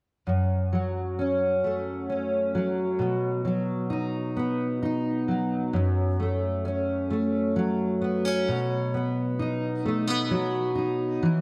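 A double-tracked, fingerpicked steel-string dreadnought guitar sits up front from 0.3 to 11.4 seconds, its warm acoustic tone carrying a romantic, swaying pop accompaniment in a straight 6/8. The harmony rocks between F#m and B across two short sections, the second beginning at 5.7 seconds. A long plate reverb bathes the mix in a dreamy haze, and this brief fragment is cut from a longer piece.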